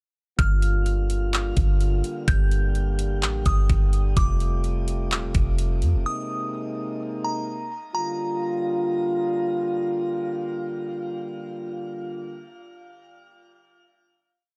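A sparse half-time trap beat at 127 BPM in 4/4, with a knocking kick, metallic hi-hats and handclaps, anchors this short, ethereal and spacious piece of atmospheric cloud-rap in G minor, where a soft, round 808-style bass plays long sliding sub-bass notes that follow the kick, a tight, dark French horn section holds sustained pumping chords from Gm7 through Fadd9 and Abadd9, and a delicate, tinkling FM tine bell loops a bright, sparse melody through chorus, low-pass filtering and tape echo, until the drums drop out at 5.9 seconds and the horns, joined by the bell until 9.3 seconds, ring on a final Gm7 from 7.9 seconds to 12.5 seconds in a dry, dark mix.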